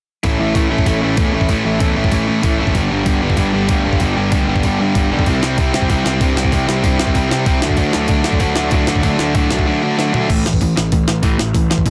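From 0.2 s, this rowdy, energetic punk rock excerpt charges ahead at 191 BPM in a straight 4/4. A gritty, pitched-up sampler-style drum kit with a thumpy kick sits up front beside a hollow-bodied overdriven semi-hollow guitar riff, while a bright cranked stack guitar riff and a growly fuzz bass in the background move through A, G, C and D. A drum fill at 10.0 s leads into a brief second section on an A5 chord where the stack guitar drops out, all within a dense, heavily limited mix with light reverb.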